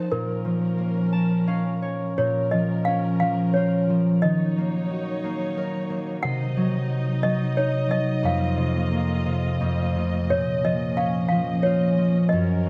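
An up-front concert harp carries the accompaniment of this dreamy, gentle children's lullaby in Bb minor, ringing out with a fingerpicked fill from 0.8 to 2.2 seconds before the second section begins. Alongside it, a clanky, bell-like toy piano sings the melody, slightly out of tune, with a plate reverb around its wooden hammers, while a veiled, con sordino chamber string section sustains bowed chords with vibrato. The rubato 3/4 pulse at 89 BPM drifts through Bbm, Ebm7, Cdim and Fsus4 to F before settling back on Bbm, in a light reverb that suits this piece cut from a longer work.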